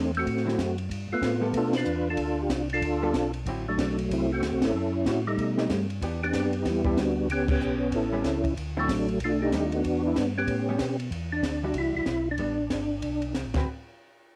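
A swinging 4/4 soul jazz organ trio groove with a bluesy, soulful mood, this home cassette recording is carried by an up-front percussive tonewheel organ melody with third-harmonic percussion, chorus vibrato and slow rotary speaker, over a round, key-clicking organ bass line, a compact cocktail kit with a high-tuned snare and tight kick under a rolled-off cassette haze, and a clean, fingered hollow-body guitar entering at 0.5 seconds, with the band hitting accents at 1.7, 4.6 and 7.5 seconds as the D9 harmony moves through extended and altered changes before settling on D6.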